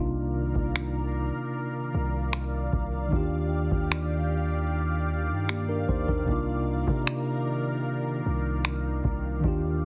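A booming analog drum machine, its deep kick and finger snaps sitting up front with a tape-warm tone, sets a straight 4/4 pulse at 76 BPM from 0.6 s, carrying this contemporary R&B fragment cut from a longer piece. Beneath it, a long sustained 808-style bass in C minor delivers sine-like low notes with a fast attack that then decay. A mellow tine electric piano plays clean accompaniment through what sounds like built-in speakers, moving from Cm11 to Ebmaj9 at 3.1 s and back to Cm11. Behind it, a lush unison pad of detuned sawtooth and square waves fades in with a slow attack, holding thick, bright chords coloured by chorus and phaser. The mix has light reverb and a heavily compressed, radio-like sheen, giving the whole a sensual, longing mood.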